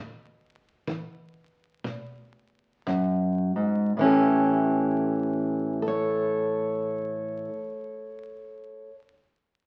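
A boxy, up-front fingerpicked steel-string parlour guitar opens this laid-back, gritty acoustic country blues fragment in A mixolydian, swinging at a slow 53-66 BPM as it eases from E5 to A7, while a tight, brushed kick drum sits quietly in a small room from 0.9 to 3.2 s, all bathed in wet studio reverb and the crackle of a very old 78 rpm record.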